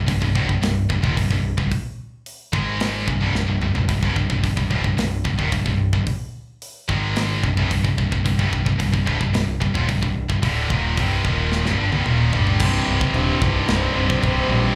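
Two high-gain electric guitars open this heavy metal passage with a relentless picked riff, one up front and one set back with a slapback echo, while a growling, overdriven electric bass drives hard beneath them. A tight acoustic drum kit enters almost at once, with a tight kick, medium-tuned snare, hi-hat, toms and bright crash and china cymbals, breaking into fills at 3.4 seconds and again at 11.5 seconds. The harmony centres on C minor, with power chords passing through. At 12.6 seconds a double-tracked fuzz guitar adds a thick, warm layer to the riff, and a lush bowed string section enters in the background with sustained, vibrato-rich chords. The whole performance sounds like a club gig heard through the venue's PA, soaked in small-room ambience and club reverb, and it is cut from a longer piece.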